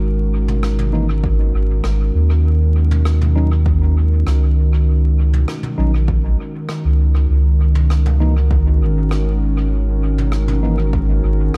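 A deep, round sub bass sits up front from the start of this hazy, meditative ambient dub piece, beneath a warbling, detuned tape-like pad of sustained chords steeped in chorus and its own reverb. Airy jazz brushes with rim clicks and toms drift in at 0.5 seconds through dub echo, clean tine electric piano stabs with dub echo follow at 0.9 seconds, and an overdriven, punchy electronic kick sits in the background from 1.2 seconds. The production is dark and dry, with vinyl crackle running underneath.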